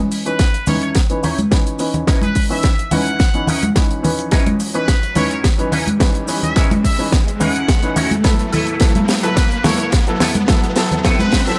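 A dry, gritty hardware recording carries this sensual, groovy nu-disco build-up in C# minor at 107 BPM, where an up-front, punchy electronic kick anchors a tight funk kit with a high-tuned snare and hi-hat, hard-handed cabasa and congas, a clear, short-sustained baby grand piano and a dark, picked electric guitar through an envelope filter (both swept by a low-pass filter), a distant, nasal muted trumpet section with vibrato and analog delay carrying the melody, a background riser from 2.8 seconds, a guitar fill at 8.0 seconds, and harmony moving from C#m9 to B7sus4 at 8.5 seconds.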